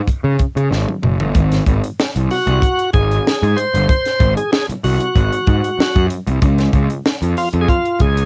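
This home cassette recording has light reverb and carries a playful, funky cut from a longer piece at 95 BPM in straight 4/4, with an Ab mixolydian flavor. A tight, dry acoustic drum kit with a high-tuned snare sits up front beside a round, fuzzed-out picked electric bass, and the drums play a fill from 0.7 to 1.4 seconds as the harmony moves from Db5 to Ab7. At 2.3 seconds a bright, shouting tonewheel organ takes the melody with a lightly overdriven edge and slow rotary speaker, before the chords settle on Db.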